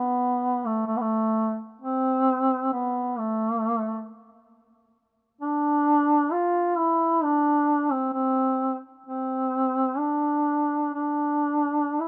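A lone, mellow duduk opens this brief passage of Caucasian folk music and carries it alone from 0.0 to 12.1 seconds. The mood is longing and mournful, with a free, rubato feel loosely set around 66 BPM in 4/4 and centred in D dorian. The duduk stays between A3 and F4, its tone shaded by vibrato and scooped notes in a folk style. It sits up front in the mix yet has a distant, roomy quality, wrapped in the ambience of a small room. The sound is that of a rough home demo, and the passage is cut from a longer piece.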